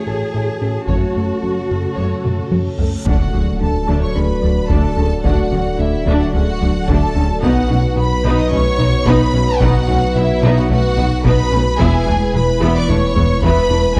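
A straight 4/4 pulse at 110 BPM drives this futuristic, vast hybrid orchestral and electronic film cue, with a compressed taiko ensemble entering at 0.9 s under a lush bowed violin melody and second line, a portamento-tinged viola accompaniment, a quiet cello and woody double bass section, a chorused tine-like synth pluck arpeggio, a round analog bass riff and a moody sawtooth pad treated with chorus and phaser. After a drum fill and a reverse cymbal, a huge dark impact lands at 3.1 s, where mellow, vintage-toned French horns bring sustained chords and a thick, saturated sub bass deepens the low end as the harmony moves through D, B and E. The mix is dark and enveloped in moderate scoring-stage reverb, and this piece is cut from a longer work.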